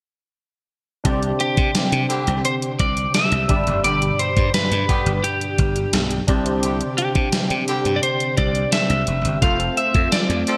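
Barky, clean tine electric piano and a warbling, vintage organ-string ensemble, both treated with ensemble chorus, open this uplifting, nostalgic 1980s-style pop excerpt at 1.0 s. A moment later they are joined by thumpy, up-front gated digital drums, a growly, punchy slap bass and distant, roomy horn stabs with digital delay. From 1.4 s a slightly broken-up, compressed lead guitar carries the melody with analog chorus and delay over a Csus2, G and F progression, all set in a bright digital production with moderate plate reverb.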